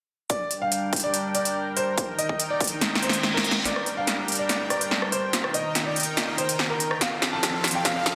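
A half-time 4/4 pulse drives this heavy, aggressive wobble dubstep excerpt, led by an up-front, layered dance kit of punchy snare, crisp hats and rim clicks, alongside a tape-toned electronic kick that drops out at 3.5 s. A lush, detuned supersaw pad with a sub octave sustains chords under sidechain pumping and a filter sweep, while a clear, natural grand piano carries the melody through a delay, all set in a hall reverb. A reverse cymbal and riser rise from the background at 3.0 s, and drum fills lead into a build-up from 3.7 s over a dense, heavily limited master.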